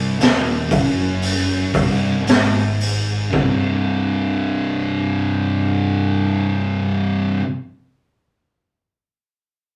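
A rough rehearsal-room recording with moderate studio ambience and tube-saturated grit captures this brooding, hypnotic stretch of stoner and doom metal, cut from a longer piece. Two thick fuzz guitars play a picked, distorted riff, one up front and the other darker in the background, over a bright, overdriven fingered electric bass. A raw garage drum kit with a boomy kick, medium-tuned snare and hi-hat plays from 0.2 to 3.6 seconds as the pace slows. The harmony shifts to a power chord at 3.3 seconds, and once the drums drop out at 3.6 seconds the guitars and bass carry on alone.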